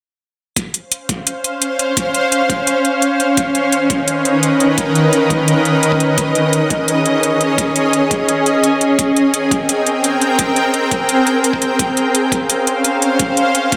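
Soaked in plate reverb, this lush, uplifting liquid drum and bass excerpt at 171 BPM in Db lydian sets a bright, ethereal, detuned pad with octave-up shimmer, granular texture and sidechain pumping up front over Dbmaj7, Cbmaj9/Eb, Eb7sus4 and Abmaj9 chords from 1.3 seconds, while metallic, tape-warm layered hi-hats and a gritty, thumpy, compressed kick in a large room drive it from 0.6 seconds.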